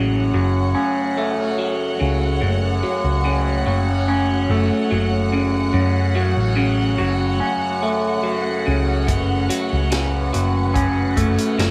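A slow, straight 72 BPM pulse in 4/4 anchors this dark, mysterious psychedelic rock passage in F# minor, cut from a longer piece and resting on a single F#m chord, where a slightly broken-up, lo-fi electric guitar riff with phaser and a round, hollow-body picked bass sit up front over lush, woody bowed strings with vibrato and a shimmering, buzzing tanpura drone, until a punchy vintage drum kit with hi-hat, kick and snare enters at 9.1 seconds in light studio reverb.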